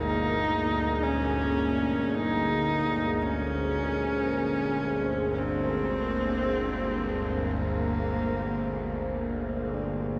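Soaked in cathedral reverb with a 5.7-second tail, this dreamy, cavernous excerpt of dark ambient drone drifts in free time with an ominous air. At the base, a bowed-like drone sounds string-like and tense, its detuned sawtooth layers carrying a noise layer, vibrato and phaser, bright and up front in the low register. A deep, moody pad holds sustained chords with slow attacks and long releases, thickened by chorus and a sub octave, resting on a single Abmaj9#11/G harmony. Over this, a clear horsehead fiddle carries the melody with light vibrato and portamento, its husky horsehair tone earthy and touched by delay, until it falls silent at 9.2 seconds. Barely audible in the depths, an eerie, inharmonic synth bell traces arpeggios, and a bronze singing bowl rings with slow metallic beating from a wooden striker.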